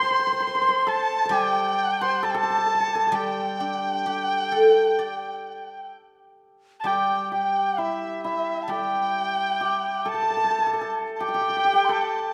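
A mellow large dizi with a buzzing membrane and crisp chiff carries the graceful, pastoral melody of this rubato Chinese chamber piece at 66 BPM in G zhi mode, joined by a rich, focused erhu with vibrato and portamento and a shimmering hammered dulcimer, while a silvery, fingerpicked guzheng accompanies until 11.4 seconds, all in a wet concert hall reverb.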